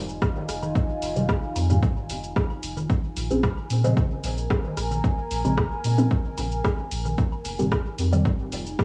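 A punchy, overdriven electronic kick sits up front in this hazy, meditative dub techno excerpt, moving at 112 BPM in a straight 4/4 in B-flat dorian. Beneath it, a soft, round sub bass with a fast attack holds the low end, pumping with sidechain compression, while filtered chord stabs, muted and detuned with a moving notch and phaser, ring out through dub echo and cassette tape grit. A deep, moody ambient pad of detuned sawtooth unison over a sine sub octave swells in slowly with chorus and built-in reverb, its sustained chords breathing with sidechain pumping as the harmony shifts from Fm7 to Bbm7 at 2.9 seconds and back to Fm7 at 7.2 seconds. A dry, analog drum machine adds overdriven hi-hat, rim click and shaker from 0.1 seconds, soaked in studio reverb and dub echo. Congas and woodblock sit in the background from 0.4 seconds, giving the whole a small-room, home-cassette haze with light digital ambience.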